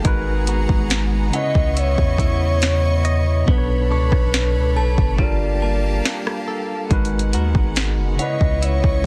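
An overdriven R&B drum kit with vintage sampler grit sits up front with a soft kick, sharp snare and rim clicks, its hi-hats dropping out between 3.5 and 6.9 seconds, while a deep, decaying 808-style bass holds long sine notes in this sensual, late-night contemporary R&B excerpt at 70 BPM in G# minor. A bright tine electric piano and a lush, bowed string section carry minor-ninth chords, a twangy clean guitar picks arpeggios through harmonic tremolo and delay in the background, and an inharmonic FM synth chime rings further back. From 1.4 seconds a mellow gliding portamento lead with chorus, vibrato and delay carries the melody over a dense, heavily limited master with digital ambience and lossy artefacts.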